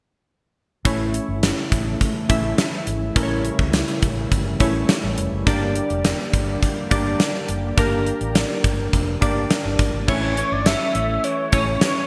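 A gated 1980s drum kit stands out most, sitting up front with a tight kick, a medium-tuned snare and bright cymbals ringing in an airy stone room. This is an uplifting, nostalgic slice of 1980s-style pop with a straight feel, cut from a longer piece and given a polished digital sheen and a lush hall reverb. Detuned analog keys blending square and sawtooth tones play the accompaniment up front, with a filter sweep, chorus and a fast, decaying attack. Behind them a vintage string machine of violas holds soft-edged sustained chords in an ensemble chorus. A dark, round, foam-muted fingered bass anchors the low end as the harmony moves from A to Gm at 5.5 seconds and back to A at 10.1 seconds. At that point a clean, picked electric guitar enters with a short riff, and at 10.4 seconds a thick, bold unison lead with a sub octave and vibrato carries a brief melody to the close.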